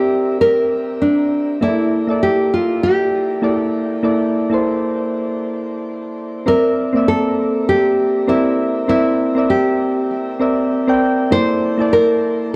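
A full-bodied, fingerpicked nylon-string guitar carries the melody up front in this wistful chillout piece cut from a longer work, set at 99 BPM in 4/4 with a light 16th-note swing and tuned to A4 = 437 Hz, while round, warbling, vintage-toned electric-piano-like synth keys with chorus supply the accompaniment over C9 and Gm69/Bb harmony, both parts bathed in shimmer reverb and tape echo within a moderate recital-hall space.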